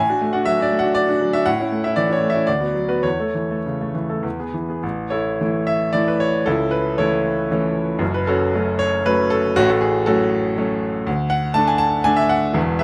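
This is a romantic classical character piece for solo piano in A major, passionate and hopeful in mood, moving in 3/4 at a flexible 98 to 123 BPM with a rubato feel. A clear baby grand carries everything alone across a range from E1 up to A5, its tone intimate and natural and placed up front, with the sound of the piano's action audible beneath the notes. The opening passage drifts from D over A through A, B minor over D and A over E before settling on E at 4.2 seconds. A new passage begins at 4.8 seconds, returning to A and then turning toward F-sharp minor before closing on a bare D fifth at 11.1 seconds. Close, detailed miking and a light touch of reverb keep the instrument present and unadorned, and the brief clip is cut from a longer work.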